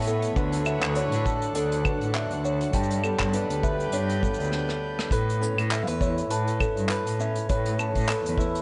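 A loping 101 BPM swing in 4/4 carries this playful, hopeful folktronica excerpt in A mixolydian, with a vintage brush drum kit of claves, handclaps, hi-hat, rim click and shaker joined by a tight kick at 0.4 seconds, and a drum fill over a break from 4.5 seconds. Fingerpicked acoustic guitar arpeggios, boxy with finger squeak and a gritty sampler edge plus delay, sit over an up-front bowed cello bass with vibrato and tube saturation, while a reedy, breathing pedal harmonium holds chords until it stops at 5.1 seconds. A delicate, tinkling music box carries a second line through tape echo as the harmony moves from D to G and lands on Aadd9, all in a light reverb with a rolled-off top.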